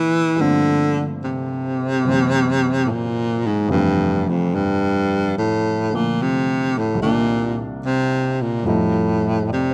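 A baritone saxophone and a baby grand piano begin together at 0.0 s in this tender, late-night jazz fragment, swinging gently at 73 BPM in F major. The saxophone carries the melody up front with a warm, vibrato-laden solo voice in its low register, while the present-sounding piano accompanies through Gm11, Gb7#11, Fmaj9, Cm7 and F7. Close, detailed microphones capture both instruments inside a moderate large-studio reverb, and the passage ends at 9.7 s.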